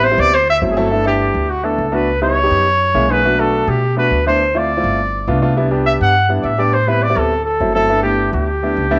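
A lively, danceable Afro-Cuban jazz excerpt opens with a mellow, soft-attacked trumpet carrying the melody at a roomy distance, over polished, short-sustained grand piano accompaniment and a dark, woody pizzicato upright bass on gut strings, all three up front together in a moderate echo-chamber studio ambience as the changes move from D9 through C#m7b5, Dm7 and Cmaj7 to settle on G6.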